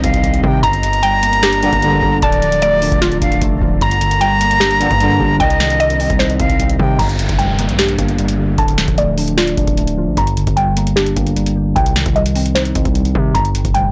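An airy silver concert flute sits up front, its tongued, unsteady vibrato line carrying a melancholic second melody in G minor until it drops out at 7.0 seconds. Beneath it, this half-time trap beat at 151 BPM hits hard: a booming analog drum machine pairs a deep kick and crisp snare with metallic hats, and a heavy, aggressive distorted 808-style bass drives the low end. A mellow tine electric piano, filtered and heard as if through built-in speakers, plays accompaniment alongside a woody, round mallet-like synth pluck that spins chorused, tape-echoed arpeggios throughout. In the background, a glassy, ethereal FM pad with phaser and chorus holds sustained chords, while a clear brass ensemble adds short stabs starting at 1.6 seconds. The flute and pad then give way to an electronic downlifter that runs to 10.2 seconds over the continuing beat, as the chords cycle through Gm, Cm and Dm. The overall sound is blown-out and overdriven, with a light digital ambience, and the clip is cut from a longer piece.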